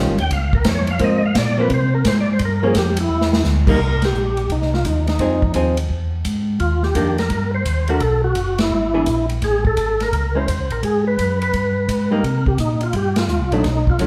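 Soul jazz organ trio at a brisk 171 BPM in 4/4, swinging its eighth notes with a smoky, bluesy mood in this short cut from a longer piece. A mellow tonewheel organ carries the bass line, round and clean with chorus vibrato and a slow rotary speaker, while a percussive tonewheel organ takes the melody, fat and lightly overdriven with key click and second harmonic percussion over its own slow rotary and chorus vibrato. An electric hollow-body archtop guitar, miked and amplified, adds dark, clean picked accompaniment, and a swinging big-band drum kit, airy and polished, brings a punchy kick, a medium-tuned snare and dark cymbals, with the drums and both organs sitting up front. The organ solos over the opening until 3.8 seconds, a brief drum fill at 3.1 seconds leads into the next section, and the band hits accents at 4.0, 8.5 and 13.1 seconds. The harmony moves through rich jazz chords such as Eb9, Gm7b5, Ebmaj7 and Amaj7, and the moderate large studio reverb places the group a little further back in the room.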